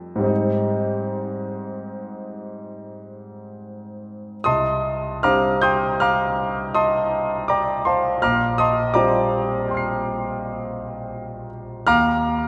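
A warm, natural concert grand piano with deep bass, placed up front, plays alone through this hazy, nocturnal fragment of impressionist classical music in C minor, tuned to A4 = 443 Hz and moving in a rubato 5/4 at roughly 70-84 BPM across a range from Bb1 to C7, its harmony drifting from Abmaj7 to Cmadd9 as a new section opens at 4.5 seconds and on to Bb69 at 8.2 seconds, heard in a vast, echoing space with a wet cathedral reverb that lingers for 5.5 seconds.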